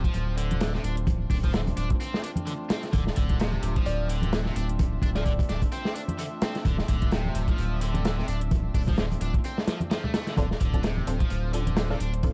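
A crunchy breakbeat drum kit sits up front, its tight kick and medium-tuned snare saturated and gritty under a rolled-off top, driving this raw, swaggering breakbeat cut at 129 BPM in D minor with a 16th-note swing. Beneath it a deep, thick sine sub bass holds a saturated D1, while a bright, overdriven electric guitar, double-tracked and picked, works a riff through overdrive and digital delay. A dark chamber string section sustains nasal, reedy gut-string chords carrying vintage 12-bit sampler grit and sidechain pumping, and a layered electronic hi-hat and bright, close congas sit in the background, the congas entering at 0.5 seconds. A woody, round FM mallet-like pluck touches D5 briefly from 3.9 seconds with chorus, small-speaker coloring and delay, and a muted, detuned sawtooth dub chord stab arrives at 10.4 seconds with ensemble chorus and delay. The whole passage rests on a single Dm7 chord, framed by light reverb, vinyl crackle and a dark production in this fragment of a longer piece.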